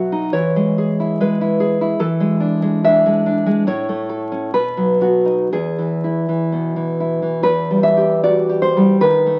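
Nostalgic yet sunny, this short excerpt from a longer romantic piece features a solo nylon-string guitar, played in 2/4 with a flexible rubato feel. The fingerpicked guitar has a dark, deep classical tone, sits up front in the mix, and spans from E2 up to E5, with finger squeaks audible along the strings. The harmony moves from E through E7, A and B before settling back on E, then turns to E minor at 7.4 s, casting a brief shadow over the brighter opening. A wet, large studio reverb surrounds the guitar. The sound carries the character of a very old 78 rpm record, with vinyl crackle running beneath the playing until it ends at 9.4 s.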